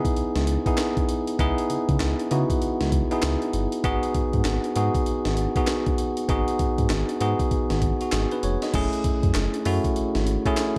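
New jack swing R&B in C# minor moves at 98 BPM with a swung sixteenth-note feel, bouncy and punchy in mood, cut from a longer piece. A bell-like tine electric piano sits up front with a bright, clean, direct tone, carrying chords that open on C#m9, move to G#m7 at 3.8 seconds, and shift to F#m9 when a new section arrives at 8.7 seconds. Alongside it, a breakbeat sampler-style drum kit sounds compressed, pitched up and gritty, with a thumpy kick, a high-tuned snare, hi-hat, handclaps and crash cymbal, re-recorded in a large room and placed up front. A smooth synth bass blends sawtooth and square waves with ring modulation, its fast attack and sustained, dark tone filling the low end. Near the close, at 9.3 seconds, a very quiet group handclap adds a crisp, human, acoustic touch from a small room, all within a dark production with light reverb.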